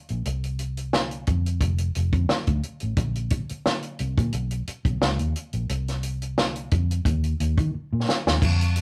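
A round, foam-muted vintage electric bass, dark and amped, carries a silky, cinematic slice of lush 1970s-style soul at 88 BPM with a gentle sixteenth-note swing, while a compact cocktail drum kit with a punchy kick, high-tuned snare and dark cymbals sits up front in a tight booth sound, rolling into a fill at 7.7 seconds, all given a rough rehearsal-room grit and tube saturation inside moderate studio reverb.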